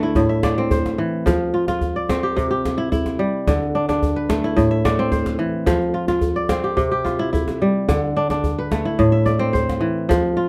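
West African traditional music, joyful and hypnotic, moving at 109 BPM in a straight 4/4 feel. A fingerpicked kora sits up front, ringing and crisp as it spins arpeggios spanning A2 to E5 across the full 10.5 seconds. A djembe played with soft hands sits further back, tight and cracking, its metal rattles adding a buzzing edge. The harmony cycles through Am, F5, C and D5, returning to Am at 9.0 seconds, which gives the passage its looping, trance-like pull. Close, detailed microphones and light reverb keep the sound intimate in this brief cut from a longer piece.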